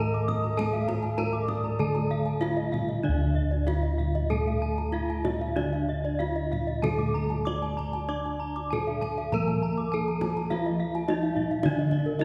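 Uneven beats at 97 BPM in 4/4 drive this shimmering, brilliant Balinese gamelan passage in D pelog, cut from a longer piece and heard from further back in a concert hall with a 2.3-second reverb. A bright, horn-mallet bronze metallophone carries the melody up front over a dark, smooth wooden-mallet metallophone accompaniment, while two more ringing metallophones spin arpeggios above, their paired tuning giving a beating glimmer, and round, smooth bossed gongs anchor the bass beside tight, band-limited kendang struck with hard hands. An airy, reedy bansuri adds a soft-attack second line with vibrato in the background only until 2.5 s, just before the music moves into a new section at 3.0 s.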